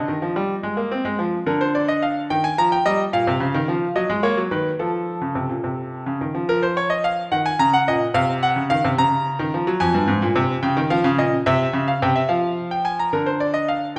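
In a steady, straight 6/8, this baroque-style two-part invention for solo grand piano unfolds with a serious, solemn character, its harmony settling into a minor key after the opening few seconds. The concert grand sounds brilliant and up front, with a deep bass beneath its upper lines, and it is set in a wet recital hall reverb. Cut from a longer piece, the passage moves through two phrases, the second beginning at 6.5 seconds and running to 13.1 seconds.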